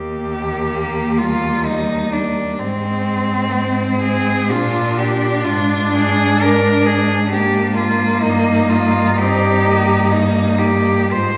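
A tender, lyrical classical piece for cello ensemble in Eb major opens with three bowed cellos: a rich, focused melody cello up front, a warm, expressive second line with portamento in the background, and a distant bass cello. All play with vibrato, and a fourth cello joins at 0.7 s with up-front accompaniment. At a slow 63 BPM in 3/4, with uneven beats and rubato, the harmony moves from Eb through Ab, Bb and Bb7/Ab to Eb/G, heard from further back in a recital hall with a 1.5 s reverb, in this passage cut from a longer piece.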